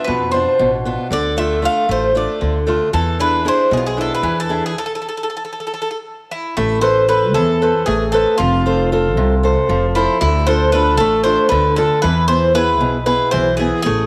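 A picked bouzouki and a fingerpicked archtop guitar open this moody, cool Greek folk piece together, with the upright bass joining at 0.1 seconds. Set in A harmonic minor and a straight 7/8 metre at 231 eighth-note beats per minute, the bouzouki carries the melody up front, its doubled strings metallic with some octave-doubled courses. The archtop guitar sits equally forward as accompaniment, its boxy body and audible finger squeak giving the chords a close, tactile character through Bdim, Dm and E7. Underneath, the pizzicato upright bass supplies a woody, thumpy low end from its gut strings. The band halts for a stop from 4.8 to 6.6 seconds, then moves into a new passage built on Amadd9, F, Dm and E. A moderate echo-chamber reverb adds depth and space to this fragment of a longer piece.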